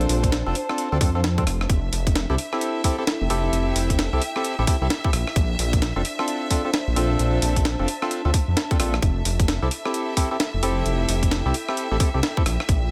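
UK garage in a bouncy, soulful two-step mould, with swung sixteenths and a chord cycle moving between Bbmaj9 and Fmaj9, cut from a longer piece. An overdriven, up-front electronic kick enters at 0.2 seconds beneath a gritty, pitched-up breakbeat sampler kit of hi-hat, rim click and high-tuned snare, while a deep, rumbling detuned saw bass holds the low end. Hollow, organ-like stabs with subtle chorus and tape echo sit above. A clear, close violin section holds sustained chords and a warbling, nostalgic lo-fi pad sits in the background, both shaped by sidechain pumping.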